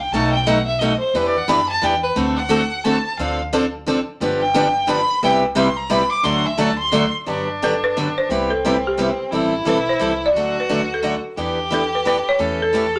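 A clear, biting violin solos up front over bright picked steel-string acoustic guitar and a woody, thumpy pizzicato upright bass in this lively, swinging 3/4 jazz manouche cut at 176 BPM in G major, before a dry, rustic folk marimba takes the melody at 7.6 seconds while the violin carries on as a second line in a wet studio reverb.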